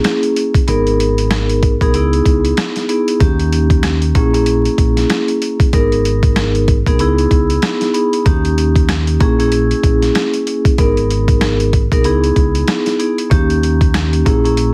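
Boom-bap hip-hop with a dark, moody cast, this short cut from a longer piece rides a swung 16th-note feel in 4/4. A mellow vibraphone struck with soft mallets carries the accompaniment from the start, its metallic, ringing tone sitting up front and mid-forward, with a slow motor vibrato and a cassette-tape coloring shaped by filtering and plate reverb. The sampler-style drum kit is pitched down, compressed and gritty, pairing a thumpy kick with a medium-tuned snare, hi-hat and rim click, and the kick drops out briefly between 0.7 and 1.3 seconds. A deep dub fingered electric bass enters at 0.7 seconds, round and dark with a direct, amped character. The harmony cycles through half-diminished, minor and dominant seventh chords, and the whole mix carries a heavily compressed radio sound dusted with vinyl crackle and light reverb.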